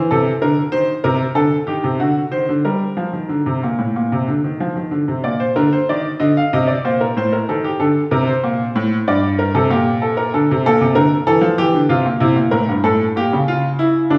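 A bright, brilliant baby grand piano with a short, natural sustain plays alone and up front in this elegant, joyful baroque-style two-part invention in G minor at 95 BPM in straight 4/4, spanning G2 to F5 across a 14.2-second clip cut from a longer piece, with a new section opening at 5.2 seconds and a wet recital-hall reverb that places the listener further back in the room.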